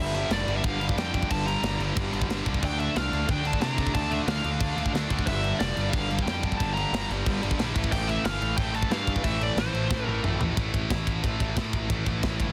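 Relentless and heavy, this metal excerpt sets a bright, distorted lead guitar melody with delay over a double-tracked high-gain riff guitar and two scooped rhythm guitars in the background, while a punchy, overdriven fuzz bass and an up-front, tight drum kit in a big room drive a dense, heavily limited mix, until a drum fill at 9.9 seconds leads into a closing section at 10.6 seconds carried by the scooped guitars, bass and drums.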